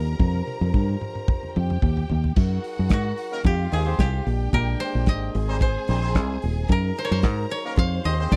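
A glamorous, danceable disco excerpt at 111 BPM in straight 4/4, built on rich jazz-tinged chords like Ebmaj9, Gb69 and Fm9, with a woody, fingerpicked koto carrying the melody over a clear, lush symphonic string section and a mellow French horn section holding sustained chords. A punchy, foam-muted fingered electric bass sits up front beside a damped 70s drum kit with a fat snare, tight kick and dark cymbals, which opens with a drum fill before a pop-style horn section enters with tight, octave-doubled stabs at 3.3 seconds. The sound is a dry, close 1970s-style studio recording with little reverb.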